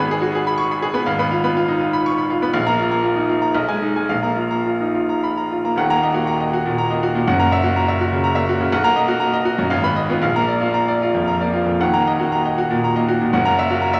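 Stormy and passionate, this 14-second cut from a longer classical virtuoso piano study in Eb minor and 3/4 moves with rubato between 104 and 127 BPM, its bright, brilliant, vintage-toned grand piano sitting up front alone across a range from Eb1 to Db6, washed in a 1.3-second recital hall reverb, and shifting at 5.8 seconds from chords around Abm and Bb5 into a new passage that opens on Ebm and passes through Gb7, Bmaj7 and Bb.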